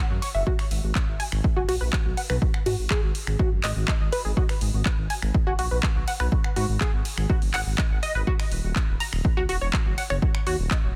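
Dreamy yet driving, this progressive house excerpt moves at 123 BPM in a straight 4/4, set in G# minor with a harmony that rests on G#m7 before shifting to D#m7 at 8.3 seconds. A tight sequenced synth carries the arpeggios from the start, its detuned sawtooth and square-wave tones shaped by a filter pluck and colored with chorus, phaser, sidechain pumping and dub echo. Underneath, a dark detuned saw bass sits up front with a deep, rumbling, beating character, saturated and sustained, and it pumps against the sidechain as well. A house drum kit of finger snaps, handclaps and hi-hat adds tape-warm texture, with soft clipping on the snare and pumping on the hats, while a punchy, layered electronic kick enters at 0.5 seconds and stays prominent. The parts sit in a digital ambience, and the master is dense and heavily limited in a modern style.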